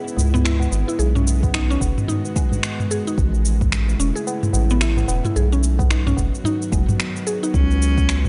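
A tense, string-like drone with built-in reverb and sidechain pumping and a woody, chorused mallet-like pluck with tape echo open this earthy, meditative organic downtempo excerpt in C# minor at 110 BPM, soon joined by a round, nasal analog bass up front, a low-tuned ringing tabla and a tape-warm electronic kit of finger snaps, shaker and toms, with a deep electronic kick arriving at 1.4 seconds and a single focused, boxy cello taking a brief bowed C#4 at 7.5 seconds, all in a dry, gritty hardware sound.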